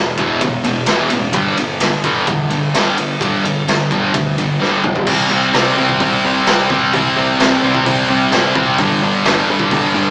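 Swaggering and menacing, this short cut from a longer garage rock track drives at 129 BPM in a straight 4/4, with a thick, bright, double-tracked fuzz guitar riff up front moving through power chords on E, G and C while a growling, overdriven picked bass sits in the background. A raw, gritty drum kit with a punchy kick, medium-tuned snare and rolled-off top enters at 0.2 seconds, working across hi-hat, ride, crash and toms, and a drum fill at 4.6 seconds launches the second section at 5.1 seconds. The band sounds captured live in one stone room with moderate reverb and a small-speaker character.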